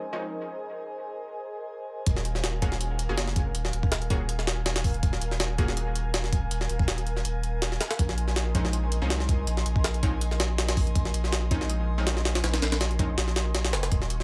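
Dry and close, this raw, atmospheric drum and bass excerpt at 162 BPM in Eb minor opens on an airy, breathy pad with chorus and a bold, bright orchestra-hit-like synth stab trailing dub echo, before the drop at 2.1 seconds brings in a thick, saturated sub bass and a gritty, compressed jungle sampler-style kit with a thumpy kick and high-tuned snare, while the stab pauses from 6.0 to 8.5 seconds.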